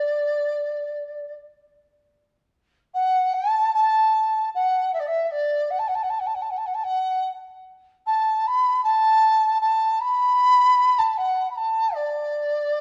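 A mellow large dizi plays alone throughout this short, pastoral and graceful cut from a longer Chinese traditional piece, its pure bamboo tone edged by a buzzing membrane, with tongued notes and vibrato that sound up front yet distant and a little unsteady, set in light reverb and a dark production.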